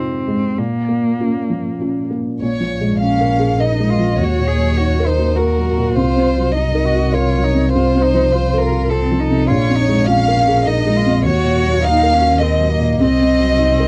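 A felt-muted upright piano, soft and dark, opens this melancholic neoclassical excerpt in Bb minor alongside a rich, expressive cello second line, moving in a rubato 3/4 at around 102 BPM. At 2.4 seconds a close, up-front chamber violin section takes the melody with light vibrato and a sul tasto touch, while a single bowed double bass adds a warm low line with portamento. Light reverb and a worn, warbling cassette-tape character with drifting pitch and a dulled top end give the reflective harmony, built on chords such as Bbm7, Ebm7 and Cm7b5, an intimate, faded quality.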